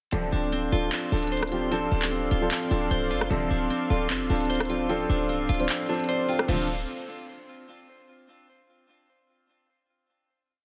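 A half-time trap beat at 151 BPM in 4/4 drives this brooding, menacing hip hop piece in D minor, with crisp hi-hats breaking into fast rolls alongside handclaps, rim clicks and a crash cymbal. Underneath, a punchy, tight 808-style bass holds long sub-bass notes with pitch slides, sitting up front with the drums. A dark, mellow grand piano repeats rhythmic open-voiced chords like a sampled loop, its tone softened by a low-pass filter, while a clean electric guitar picks a patterned eighth-note arpeggio coloured by spring reverb and tape echo. Further back, a detuned sawtooth pad sustains chords with a gentle chorus, and a lush bowed string section with vibrato punctuates the loop with short stabs. The kick drops out from 5.7 to 6.5 seconds as the piano plays a fill, and the whole hook resolves onto a final chord ringing out from 6.5 seconds inside a dense, heavily limited modern mix with light digital ambience.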